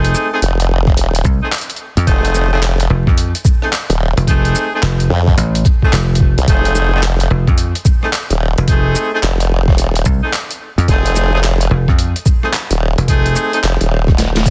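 Dense, heavily limited and dry with a layer of vinyl crackle, this playful, gritty glitch hop excerpt swings over a single F7#9 chord as a punchy slap bass and a formant-sweeping, chorused wobble bass sit up front beneath bright, vibrato-tinged horn stabs carrying sidechain pumping and dub echo, while an overdriven, pitched-down boom bap kit of high-tuned snare, handclaps, hi-hat, rim click and shaker is joined at 0.9 seconds by a thumpy electronic kick before a drum fill at 14.2 seconds.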